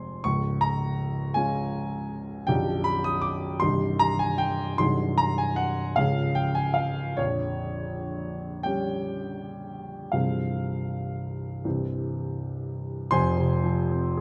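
Mournful and wistful, this romantic nocturne for solo grand piano unfolds in F minor at a slow, rubato 6/8 pace of about 37 to 56 dotted-quarter beats per minute, reaching from the deep bass up into the high treble. The polished, up-front piano sits in light reverb with a dark production, its harmony drifting from Db through G7/B, Cm and Gdim/Bb before turning toward C and settling on F minor at 13.1 seconds, where a new section begins. This fragment is cut from a longer piece.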